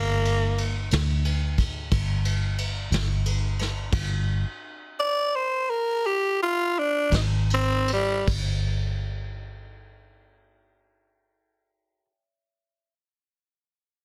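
A raspy, growling tenor saxophone with jazz-style vibrato carries a soulful, brooding slow blues in 12/8, slowing from 2.6 seconds over Gm, G5 and Abmaj7 chords, backed by a round, foam-muted vintage electric bass that continues alone after the brushed drum kit, with its dark cymbals and softly clipped snare, stops at 8.5 seconds, in this light-reverb fragment cut from a longer piece.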